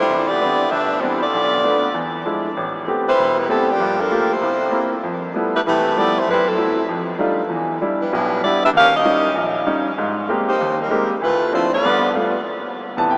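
Jazz swinging at 194 BPM in C major, joyful and brassy, with a tight, close-miked saxophone section carrying the melody with light vibrato from 0.0 to 12.1 s over an intimate baby grand piano whose audible action noise and long sustain colour its accompaniment, both up front yet set in a huge ambient reverb of a vast, echoing space with a small-speaker sound, as rich chords like Cmaj9, Fmaj9#11 and Abmaj9 pass before landing on Cmaj7 at 12.5 s in this short cut from a longer piece.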